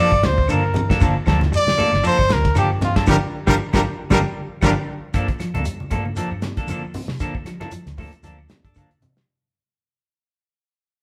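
Set in a moderately reverberant large studio with the band playing live in one room, this defiant, driving afrobeat excerpt from a longer piece opens with an up-front trumpet melody with light vibrato over dark semi-hollow guitar arpeggios, bright picked stabs from a clean electric guitar, a round, punchy foam-muted bass, a damped 70s drum kit with a tight kick and dark cymbals, very quiet woody claves and thin-skinned congas, and grainy shekere in the background, until a breathy, whispered baritone saxophone joins for a band accent at 3.1 seconds and a drum fill leads into a fade-out from 5.1 seconds.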